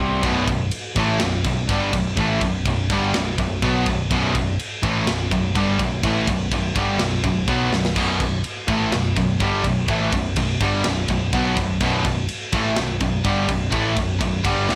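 A sludgy, dark guitar riff and a tight, bright distorted guitar open this heavy metal excerpt together, alongside a growly, amped picked electric bass, with the tight guitar sitting up front and the sludgy one back in the mix. At 0.2 seconds a third, high-gain guitar enters, double-tracked and set in the background, alongside a tight metal drum kit with a big-room, mid-forward acoustic sound. The drums move in half time, with bright cymbals, a medium-tuned snare carrying a touch of soft clipping, and a tight kick placed up front. A drum fill arrives at 7.7 seconds, and the music stays anchored on B minor throughout. The mood is relentless and dark, and the whole recording sounds blown-out and overdriven, with only light reverb around it.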